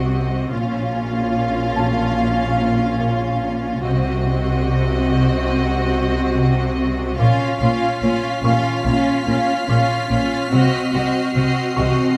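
Bathed in the wet reverb of a scoring stage, this eerie, tense suspense cue for film moves at 72 BPM in Bb harmonic minor, with Bbm and Cdim chords trading places in a cut from a longer piece. A lush, bowed violin section carries the melody over a warm second violin line and rich violas, while vibrato-laden cellos sit in the background and expressive, close chamber double basses anchor the bottom. A woody, buzzing marimba riff on hardwood bars and a very quiet, felt-muted upright piano with a mellow, vintage tone add texture, and a high, even violin layer, heard only briefly at the opening, returns at 7.2 seconds.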